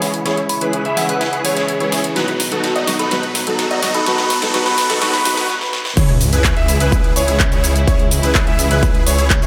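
A straight 4/4 pulse at 126 BPM carries this triumphant, anthemic festival progressive house build-up over C#m and B chords, with a big-room dance kit of huge snare and metallic hats, lush sidechain-pumped supersaw chords, warm concert grand piano arpeggios, a soft felt-muted upright piano, distant biting symphonic strings and a glassy, warbling synth bell melody with vintage 12-bit grit, plus a background riser and sub drop arriving at 1.8 s, until the drop at 6.0 s brings in a punchy, up-front electronic kick and a thick, menacing detuned saw bass, all set in a dreamy mix soaked in plate reverb.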